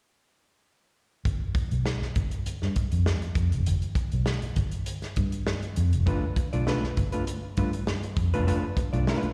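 This strutting funk fragment, cut from a longer performance, opens at 1.3 seconds with muted fingered electric bass and a soul drum kit together, settling on a G9 chord in G mixolydian at 100 BPM in a straight 4/4. The bass sits up front with a round, punchy, foam-muted tone that stays low and dark. The drums pair a tight kick and a medium-tuned snare with hi-hat, their rolled-off top and roomy character giving the groove a warm edge. At 6.1 seconds a hollow-body jazz guitar joins in as accompaniment, its clean, fingered sound carrying a slapback echo. The whole band comes across like a live gig heard through the venue's PA, bathed in the reverb of a recital hall.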